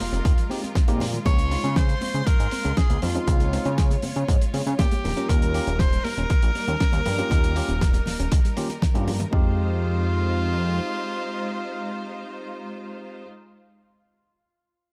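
A groovy, sleek nu-disco excerpt in F minor at 119 BPM opens on a drop over Fm7, Dbmaj7 and Eb7 chords. A clear tenor saxophone melody runs through tape echo over lush, distant strings with sidechain pumping, a punchy, up-front electronic kick, a fat, nasal analog bass, and a damped 70s kit with cabasa, hi-hat and a fat snare. Soft ringing congas and a very quiet warbling round pluck playing arpeggios fill out the groove, and a bright tine electric piano with slapback echo joins at half a second. The drums, congas and pluck stop around 9.3 to 9.6 seconds, and the bass drops out at 10.8 seconds, leaving the saxophone, strings and piano over a return to Fm7.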